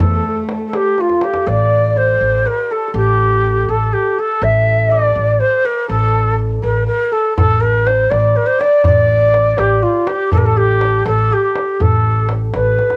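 A steady 6/8 at 81 BPM in dotted quarters carries this longing, soulful Persian modal piece in A dastgah shur, tuned to A4 = 438 Hz and cut from a longer work recorded at home on cassette in a small room. A breathy, end-blown ney with vibrato and a crisp attack leads up front, joined by a shimmering, hammered santur colored by tape echo, while a smooth, bowed cello sounds only until 0.9 seconds and a woody, growly pizzicato upright bass anchors the low end. The tight tombak, played with soft hands, adds a fill at 1.0 seconds, drops out, and returns at 7.4 seconds.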